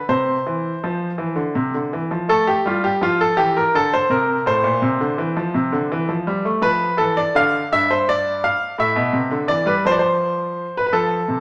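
Serene and flowing, this short classical excerpt from a baroque-style suite movement in 6/8 features a solo baby grand piano, brilliant and polished with a short sustain, played with rubato up front in a stone room whose wet reverb rings around it, moving through C, F, Dm and Am harmonies.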